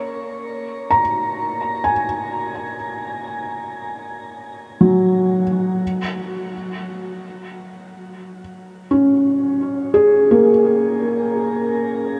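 A felt-muted upright piano plays alone from the first moment, its mellow, intimate tone sitting up front with the soft clicks of its action audible beneath an opening F#add9 chord. Tape echo trails the notes into a long, wet shimmer reverb, and a dulled cassette sound gives this luminous, serene ambient fragment a hushed, faded glow. The second passage begins at 5.8 seconds, and the piece is cut off at 12.2 seconds.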